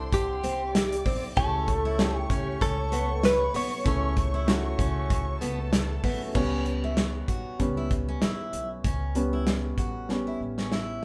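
A live, in-one-room band sound with moderate studio reverb frames this earnest, dramatic stretch of lightly swung piano-driven pop, cut from a longer piece. A clean, scooped, direct-recorded electric guitar with phaser carries the melody until 4.8 seconds, while a dark, bowed chamber violin section with vibrato adds a second line until 6.3 seconds. Beneath them are an intimate concert grand piano with audible action noise, a picked steel-string acoustic guitar riff, thumpy pizzicato upright bass and a punchy, up-front small-room country drum kit. From 6.3 seconds the grand piano takes a solo, and a drum fill marks the closing moments.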